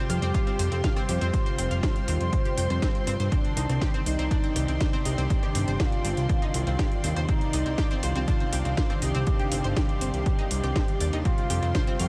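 A fat, saturated analog bass and a punchy, up-front kick anchor this dark, melancholic melodic techno excerpt at 121 BPM in C minor, moving from Fsus2 to Cmadd9 under light reverb. A smooth, nasal synth lead with vibrato carries the melody over bright, round pluck arpeggios with lush chorus and delay, while brassy pad stabs and a distant symphonic string section sit in the background, pumping against the kick along with the bass. Cracking snare, rim click and metallic hats fill out the groove, a very quiet electronic swell appears at 2.5 seconds, and a tense, string-like drone slips in barely audible from 3.5 seconds.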